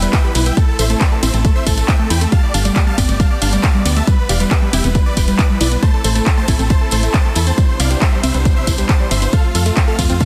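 A huge, detuned supersaw lead carries the melody of this euphoric, driving uplifting trance excerpt in A minor at 137 BPM, pumping with sidechain and trailed by digital delay, over a tight, phased arpeggiated synth, a smooth-topped chamber string section holding sustained chords in the background, and a round, dark FM bass sitting up front. An overdriven, layered electronic kick joins at 0.1 s beneath an analog drum machine of congas, handclaps, hi-hat and ride re-recorded in a large room, plus a jingly tambourine placed close. The chords move from Em through Am, Gadd9 and Cmaj7 to F, all wrapped in digital ambience and a dense, heavily limited modern master.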